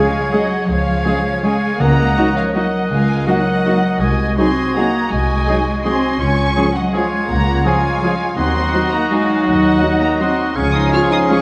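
A lilting 3/4 waltz at 164 BPM with uneven, rubato beats gives this festive, elegant orchestral ballroom passage in Db major its gentle sway, as con sordino violins carry the melody with a veiled, smooth tone. Around them, a second violin line sits in the background, while a bright, airy flute, a present oboe and a roomy clarinet add second lines over bowed viola accompaniment, warm French horn chords, clear trumpet stabs and a cello bass. Calf-headed timpani sound only until 2.3 seconds, and distant double basses join at 0.7 seconds, all within a moderate scoring-stage reverb and a dark, warm production on this short cut from a longer piece.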